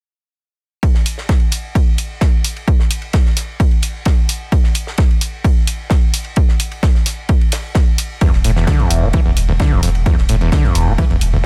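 A punchy, layered electronic kick sits up front from 0.8 s, alongside a dry, damped 70s kit whose dark ride cymbal and medium-tuned snare stay in the background, with pumping, tape-toned electronic hi-hats joining just after. This is hypnotic, dark peak-time techno in a straight 4/4 at 130 BPM, cut from a longer piece and set in a studio reverb. At 8.2 s a screaming acid line bursts in: squelchy, resonant sawtooth with a filter sweep, distortion, chorus and a cassette grit, pumping against the kick over a deep, thick, saturated sub bass that holds E1.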